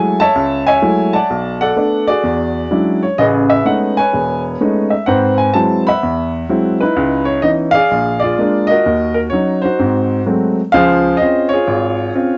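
Moody and smoky, this short solo jazz passage, cut from a longer piece, swings at 127 BPM in 4/4 in C# minor. A single upright piano carries everything, spanning E1 to B5 with a woody, intimate tone, long sustain and the soft mechanical noise of its action audible up front. The harmony moves through rich extended chords, from F#m9 and Bm7 to E13 and a lingering Amaj9#11, then a G#7alt that settles onto C#m9. A brisker turn through A#7, D#m7 and G#7b9 leads to a shift at 10.7 s, where the music lands on a C#maj7 that holds until 12.4 s. Light reverb gives the piano a little air, while the top end, rolled off above 7.7 kHz, lends the recording a smooth, vintage glow.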